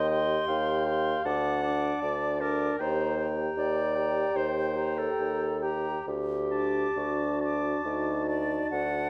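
Heard through close, detailed microphones in a recital hall with a moderate reverb, this short excerpt from a slow romantic movement for wind quintet has an elegiac, solemn character and a flexible, rubato pulse in four. A silver concert flute carries the melody in its upper register, its tone pure and metallic with vibrato and a soft attack. Beneath it, the oboe sings a second line with light vibrato, while the clarinet and French horn supply mellow accompaniment in a classical style, the clarinet entering each note gently. The bassoon anchors the bass with light vibrato and sits up front in the blend, giving the low end a rounded, warm presence. All five instruments play together throughout the full 9.1 seconds, their harmonies moving through a dark minor colour before settling onto shifting major chords.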